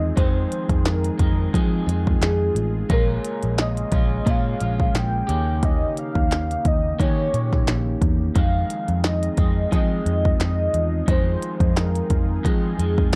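A dark, dry-sounding excerpt of lonely, mellow indie and bedroom pop: a velvety, detuned synth lead carries the melody over a slightly broken-up electric guitar through a small old amp with lush chorus and warbly pitch drift, while a swirling phased analog pad sits in the background, a round, foam-muted picked bass sits up front alongside an overdriven glitchy drum kit with deep kick, tiny snare and clicky hats that enters at 0.2 s, and a very quiet, hollow group handclap joins at 0.9 s, the whole swung groove moving through Fm7, Bbm7, Eb7 and back to Fm7.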